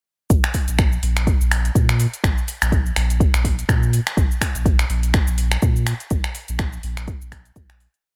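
A deep, up-front electronic kick drives a four-on-the-floor pulse from 0.3 seconds in this warm, hypnotic afro house piece at 124 BPM, swung on the sixteenths and set in a dry space. Alongside it, a round, sine-like sub bass plays a sustained, dotted rhythm between Bb1 and Bb2 with sidechain pumping, while a programmed afro-pop kit of finger snaps, shaker and metallic hi-hats, re-recorded in a large room, fills out the groove. The whole short piece is one drop, fading out from 5.5 seconds to its end at 8.0.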